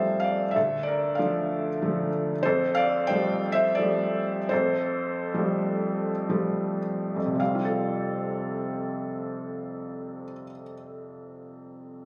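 This brief cut from a longer classical piece moves in a rubato 3/4, with the tempo drifting between 50 and 96 BPM and slowing down from 2.4 to 7.4 seconds. It is a lyrical solo for felt-muted upright piano in F major, tuned to A4 = 439 Hz, with a brooding, moody cast. The piano sits up front with a soft, muted, mellow, intimate and warm tone, its thin felt and audible action noise giving the sound a natural, close feel as it ranges from D2 to A5. The harmony opens on Fadd9, shifts to Dm at 0.6 seconds and returns to Fadd9 at 2.4 seconds, and a second section begins at 7.4 seconds and runs to the end at 12.1 seconds. Captured on a phone in the room, the recording carries club ambience and compression, with a moderate concert hall reverb of 1.8 seconds around the instrument.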